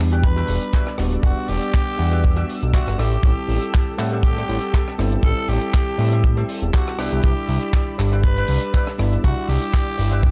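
A dark, warm production with light reverb and studio ambience frames this sensual, cosmic nu-disco excerpt, moving through Em9, Am7 and Cmaj9 chords. A fat analog bass with a filter sweep and a dry, up-front kick drive the groove alongside a tight acoustic funk kit of handclaps, hi-hat and rim click. A bell-like tine electric piano and a lush, detuned unison pad pump with sidechain beneath a twangy, envelope-filtered guitar riff in the background, while from 0.2 seconds a raspy, growling tenor saxophone carries the melody with light vibrato and delay.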